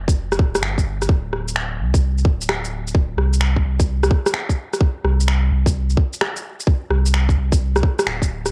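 A dry home recording on cassette opens this wistful, ghostly future garage excerpt, its swung 4/4 groove carried by a tight electronic kick and a layer of electronic shaker, rim click and finger snaps. Both drum parts have a tape-warm tone from being re-recorded in a large room and sit up front. Beneath them, a deep, round sine sub bass with a fast attack and long sustain pumps against the sidechain across the full 8.5 seconds.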